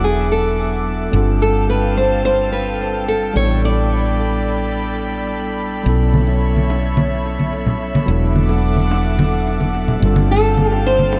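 A straight 4/4 groove at 108 BPM carries this warm, smooth sunset chillout excerpt, where a round, dark fretless bass sits up front under a clean tine electric piano and an airy, breathy pad with chorus drifting through sus4 chords from E9sus4 to B9sus4, while a fingerpicked nylon-string guitar with tape echo plays the melody until 4.7 seconds and returns at 10.3 seconds, and soft-handed, saturated congas and bongos join at 6.1 seconds in an echo-heavy mix with light reverb.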